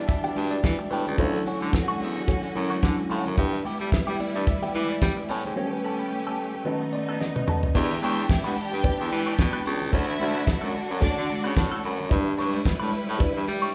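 An edgy baritone saxophone carries the bass line in this driving, danceable disco cut, punchy and forceful up front, with vibrato colouring its low notes. The groove moves at 110 BPM in 4/4 with a light 16th-note swing in E dorian, cycling through chords such as Em7, Dmaj7, G6 and A9. A bell-like tine electric piano takes a bright, direct solo from the opening until 7.7 seconds, as a drum fill from the damped 70s kit, starting at 7.2 seconds, leads into the second section. That kit sounds dry and dark-cymballed, with a fat snare and tight kick, while high-tuned congas with hard hands sit distant in the background and a clean, compressed electric guitar with wah supplies picked accompaniment. A lush, intense string section holds sustained chords throughout, joined from 7.7 to 11.5 seconds by a second, more focused string line higher up. The band plays together in one large studio room with moderate reverb, and the piece is cut from a longer performance.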